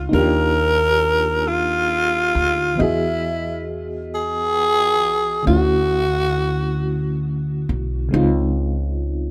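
A slow, straight six-eight pulse at 45 BPM, counted in dotted quarters, carries this intimate, sensual R&B fragment, cut from a longer piece and tuned to A4 = 443 Hz. Up front, a raspy, growling tenor saxophone sings the melody between E4 and Bb4 in a jazz-style solo, with vibrato, subtone breath and scooped notes, and falls silent at 7.2 s. Beneath it, an FM electric piano with tremolo supplies dark, warbling vintage chords with a fast attack, a decaying tail and a noise layer. A woody, thumpy pizzicato upright bass on steel strings sits close and growly in the low register. The harmony glides through Ebmaj9, Emaj9, Dmaj9 and Dbmaj9. Light reverb surrounds a rough home-demo mix.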